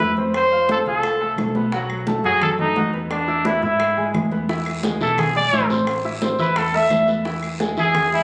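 A clear trumpet leads up front in this short, danceable salsa cut from a longer piece, singing a pop-style solo melody with light vibrato and a vintage character. Beneath it, a concert grand piano supplies clear, polished accompaniment with a deep low end and short sustain, while a hollow-body short-scale electric bass adds a dark, round, amped foundation. The driving groove moves at 174 BPM in straight 4/4, with thick-skinned, medium-tuned congas played with soft hands, tight high-tuned bongos in the background, and woody claves entering at 0.3 seconds. A raspy, close and dry guiro joins the percussion at 4.5 seconds. The harmony moves through F, B7, E, Am and back to E, and the whole performance carries a moderate plate reverb and the compressed, club-room ambience of a phone recording made in the room.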